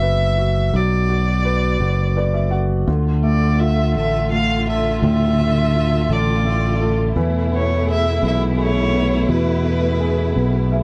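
A rich, bowed solo violin with smooth vibrato carries the melody from the start of this tender, swaying pop piece in 6/8 at 56 BPM. It sounds slightly distant over a woody upright piano, whose action noise is audible, and an up-front, amped fingered electric bass. The piano adds a fill at 1.8 seconds, just before a lush studio string section enters at 2.9 seconds with expressive portamento, while the harmony moves from B minor to D minor and then E in this dry, close, 1970s-style studio clip cut from a longer piece.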